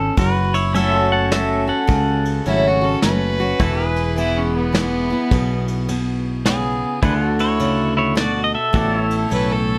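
Sunny and down-home, this swung honky-tonk waltz excerpt sets an up-front, fingerpicked pedal steel melody with volume swells over a full-bodied jumbo acoustic guitar, a bright, twangy second pedal steel holding sustained chords, round, punchy fingered bass and dark, smooth brushed drums, while a clear, earthy bowed fiddle carries a second line from 2.5 to 6.2 seconds and returns at 9.3 seconds as the harmony moves from F#m through E and D to A, all captured with close, detailed microphones in light reverb.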